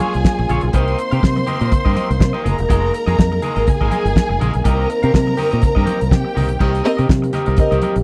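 A dry, close 1970s-style studio sound frames this celebratory, danceable disco excerpt with a swung sixteenth feel: up front sit a damped drum kit with a fat snare, tight kick and dark cymbals and a punchy, foam-muted fingered electric bass, while a twangy, slightly broken-up electric guitar accompanies, a mellow vintage French horn section holds sustained chords, a lush, dark bowed string section with vibrato carries a second line until 7.7 seconds, and bright, hard-handed congas stay in the background.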